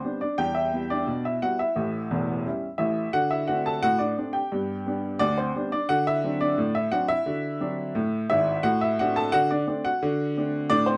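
A solo upright piano opens this cheerful, lively ragtime passage, a short section cut from a longer piece. It moves at 87 BPM in 2/4 with a straight feel, and the piano sounds woody and natural, placed up front in the mix. The close, detailed miking catches the instrument across its span from E1 to A5, while a light reverb adds just a touch of room around it. The harmony travels from E minor through A7 and D7 to G, then settles on D7 for the remainder, with a brief D7/A near 8.6 seconds before the passage ends at 11.0 seconds.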